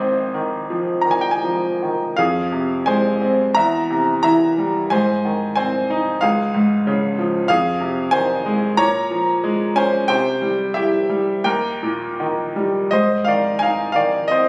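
Hopeful and sunny, this lyrical classical solo piano passage in F minor, cut from a longer piece, moves in a rubato 4/4 at 77-96 BPM, its brilliant, polished grand piano sitting up front with short sustain across Ab1 to Bb5 and tuned to A4 = 441 Hz, while the harmony travels from Ab6 through Fm, C7/E, Db and Bbm7 to Eb before returning to Ab6 at 12.9 s, the sound caught on a phone in the room with light studio reverb and a top end that stops at 10.5 kHz.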